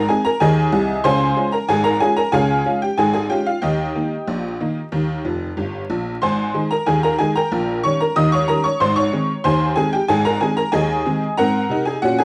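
A jangly, metallic tack piano opens this lively, cheerful ragtime passage, playing alone and up front from the first moment to its close at 12.2 s. The piece moves at 93 BPM in a straight 2/4 in Ab major, with harmony that travels from Ab through Db and Eb before returning home and touching Ab7 at the end. The piano covers a broad span from F1 up to Eb6, and its percussive, boxy attack carries a vintage character shaped by cassette tape coloring. At 5.2 s a brief honky-tonk fill decorates the phrase before the chords settle back on Ab. The sound has the feel of a home cassette recording, with a moderate studio reverb, a bed of vinyl crackle, and an ending that shows it was cut from a longer piece.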